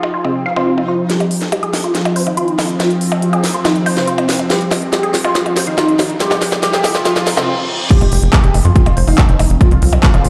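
Opening on a thick, detuned unison lead with phaser and delay over a bright, morphing wavetable pad, a woody wave-folded pluck riff in the background and overdriven techno drums with a cracking snare and smooth hats, this hypnotic, alien psychedelic trance fragment in F minor at 141 BPM builds through a drum fill, filter sweeps, a very quiet riser and a brief break until a heavy, up-front kick and a tight, punchy sequencer bass slam in for the drop at 7.9 seconds, while a nasal vowel-sweep wobble bass surfaces faintly, all sitting in a large, reverberant room.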